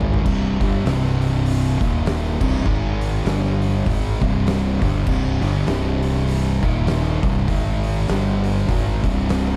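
Stoner and doom metal in C minor, this brooding, heavy fragment of a longer piece moves at 100 BPM in 4/4 with a swung eighth-note feel. An oversized, low-tuned acoustic drum kit sits up front, opening with a fill at 0.0 seconds and driving onward with a punchy kick, a fat snare, toms, hi-hat and dark cymbals, all ringing in a bright stone room that pumps. Three thick fuzz guitars, one of them double-tracked, hold the riff in the background, their picked, distorted tone cycling through C5, Eb5, Ab5 and G5 before settling on C minor. Underneath, a growling fingered electric bass, direct and amped with overdrive, grinds out the low end. The small room ambience and dark production keep the sound dense and murky until the drums stop at 9.5 seconds and the other parts at 9.6 seconds.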